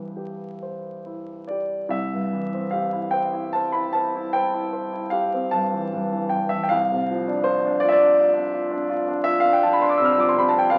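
A warm, present grand piano plays alone in this serene, tender romantic nocturne in C major, unfolding in a rubato 12/8 at roughly 44-57 BPM across a range from C2 to F6, moving from C to Dm7/C at 6.7 seconds, heard through moderate studio reverb and the crackle of a very old 78 rpm record in a brief cut from a longer piece.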